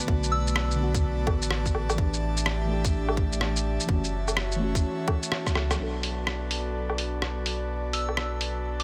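Future garage at 126 BPM in B minor, this ghostly, rainy excerpt swings its 16ths over Bm7, A7sus4 and F#m7 chords, with muted, felt-like synth keys carrying chorus, phaser, 12-bit sampler grit and tape echo while a breathy, chorused pad and a round sine sub bass pump under sidechain. A tight, tape-warm electronic kick sits up front until 5.5 seconds beside a muffled, pitched-down lo-fi kit of hi-hat, rim click, shaker and woodblock, and a drum fill and band accent lead into a new section at 5.8 seconds. A pure FM bell offers brief phased, echoing touches at the start and returns at 7.9 seconds, all set in light digital ambience.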